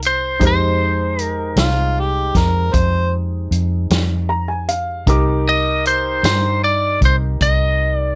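Dry and close, with little reverb, this short cut from a longer slow blues sits at 52 BPM in a straight 12/8, brooding and mournful over Fm9 moving to Cm9 at 5.1 seconds. A lightly driven lead guitar carries the melody up front, bright, twangy and slightly broken-up, its picked notes compressed within a narrow high span. A vintage drum kit with a punchy kick and a medium-tuned snare sounds natural in a studio room, while a foam-muted fingered electric bass adds a dark, round, amped low end. An overdriven harmonica cuts in from 1.6 to 3.1 seconds with a gritty, amplified solo line, full of vibrato, scooped notes and tongue slaps in a jazz style. Underneath, a clear upright piano accompanies with a woody, intimate tone, long sustain and audible action noise, adding a fill between 3.9 and 5.1 seconds.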